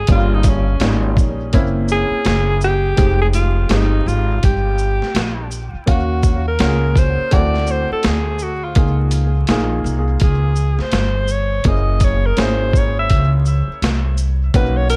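Vinyl crackle and heavy echo color this small-room mix from the first moment, setting a warm yet cool tone for a jazz-hop groove cut from a longer piece. At 83 BPM in 4/4 with a lazy sixteenth-note swing, the boom bap drum kit sits up front with a gritty, compressed, sampler-style sound, pairing a thumpy kick and high-tuned snare with hi-hat and shaker, all carrying the air of being re-recorded in a large room. Beneath it, a pizzicato upright bass on gut strings plays woody and close, anchoring the harmony from the start. A dark, mellow concert grand adds intimate accompaniment with audible action noise and a deep low end, its chords trailing into tape echo as they drift through Gm7b5, Gb7#11, Fm9, Ebm9, D9 and Db6 before settling on Gb9. Over the whole 15 seconds, a breathy alto saxophone takes the solo in a jazz style, clear and smooth on top, with scooped notes, vibrato and its own tape echo lingering behind each phrase.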